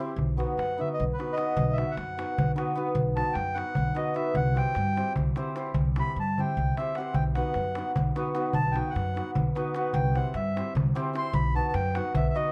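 A mellow, reedy accordion carries the melody from 0.6 seconds, its round single-reed tone sitting up front as it solos through this fiery, bittersweet Balkan wedding-band excerpt. Set in B phrygian dominant and a straight 7/8 at 301 BPM counted in eighths, the harmony moves back and forth between B and C. A shimmering, ringing hammered dulcimer supplies the accompaniment from the very start, while a woody, growly pizzicato upright bass with steel strings anchors the low end. A small, high-pitched clay darbuka with a natural skin is struck with hard hands, adding drum fills at 0.8 and 6.1 seconds. The production is dark and warm, with moderate studio ambience.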